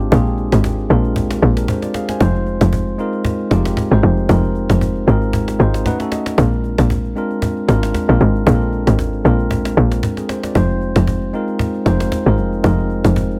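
A lightly swung sixteenth-note groove in four sets the pace for this soulful, deep amapiano piece, cut from a longer track. The tight log drum bass sits up front and dominates the mix, its punchy, percussive tone built from a fast attack that then decays, with a noisy edge layered over its low register. A mellow tine electric piano, also placed close and direct, supplies clean chordal accompaniment, moving through lush extended harmonies such as Bb9 and Fm7. Around 5.6 seconds the electric piano adds a short fill that ends by 6.4 seconds, passing briefly over a B9 chord before settling back to Bb9. Underneath, a snappy cajon played with hard hands adds an acoustic snare rattle, recorded close and kept lower in the balance. The dry sound carries little reverb, keeping the whole passage intimate and immediate throughout its 13.4 seconds.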